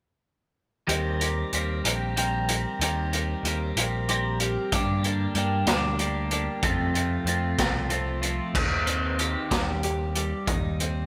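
A gritty, saturated garage drum kit sits up front with a boomy kick and a rolled-off top, driving this dark, angsty quiet-loud alternative rock fragment in a straight 6/8 from 0.9 seconds. A clean, compressed twelve-string electric guitar spins phaser-tinged arpeggios over Eb6, Gm and F, while a growly, overdriven picked bass adds punchy weight underneath. A moderate concert hall reverb opens up the space, and the passage shifts into a new section at 8.6 seconds, back on Eb6, before the cut.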